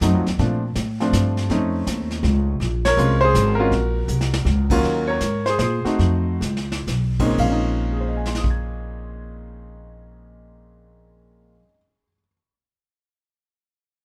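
A jazz waltz in 3/4 moves between 113 and 162 BPM with swung eighth notes, setting a smoky, late-night mood in Bb minor. A vintage brush kit sits lower in the mix, with dark cymbals, a medium-tuned snare, a tight kick and a rolled-off top, and its small room pumps audibly. The whole trio hits an accent at 2.8 seconds, and brief drum fills mark the phrases. Up front, a pizzicato upright bass on steel strings sounds woody and growly, while the grand piano carries the melody across a broad range with a clear, smooth, vintage tone and short sustain. The harmony drifts through extended chords such as Bbmaj9, F7b13, Ebm9 and F7b9 before settling on Bbm11, and the band slows down in the middle stretch. The drums drop out at 8.6 seconds, and bass and piano carry this fragment of a longer piece to its close in a room with little reverb.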